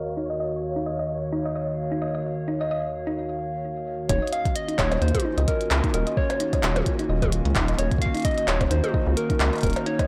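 This melancholic, intricate IDM excerpt in Eb minor at 130 BPM opens on a warbling, nostalgic tape-like pad holding an Ebm7 chord, a tine-like thumb-piano pluck tracing arpeggios, and a very quiet pulsing gated texture that stops at 3.2 seconds, while a filter sweep moves over the pad and pluck. At 4.1 seconds a round, keys-like FM lead takes up the melody with chorus and tape echo. Entering with it are a rubbery, bouncy square bass, an overdriven soft electronic kick, and a glitchy kit of clicky hats, handclaps, toms and percussion blips, low-pass filtered and re-recorded in a small room, all over swung sixteenths, a moderate plate reverb and a blown-out, overdriven mix.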